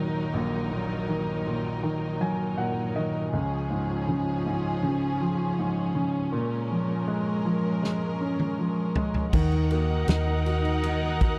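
Heartbroken and emotional, this pop ballad excerpt in Eb minor at a slow 80 BPM opens with a clear, polished baby grand piano and a lush, bowed string section with vibrato and a smooth top sustaining the chords, before a natural small-room drum kit with a fat snare and punchy kick enters on a fill at 7.8 seconds, joined at 9.3 seconds by a round, foam-muted vintage electric bass up front and a full-bodied fingerpicked steel-string acoustic guitar with finger squeak in the background, the whole captured in a dry, close 1970s-style sound touched by light reverb.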